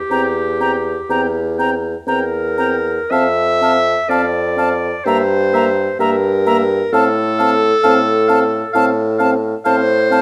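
A slow 4/4 pulse at 55-67 BPM breathes with rubato in this lyrical, serene romantic movement for wind quintet in F major, cut from a longer piece and set in a moderate recital hall reverb. A bright, airy silver flute carries the melody with vibrato and a soft attack, above an oboe's lightly trembling second line, while an up-front, smooth-topped clarinet and a French horn in the background supply accompaniment. A mellow bassoon anchors the bass, and the harmony moves from C7/E through F and Edim/G to F/A across the 10.2 seconds.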